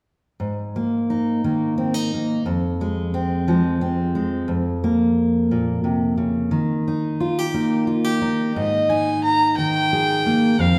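In a 6/8 at 59 BPM in Ab major, this nostalgic, pastoral acoustic folk excerpt opens at 0.4 seconds with an up-front, full-bodied fingerpicked steel-string dreadnought guitar, finger squeak audible, moving through Absus2, Fm, Bbm/F and Eb, until a reedy, gut-string fiddle enters at 8.5 seconds with a bowed melody, all bathed in the lush reverb of a recital hall.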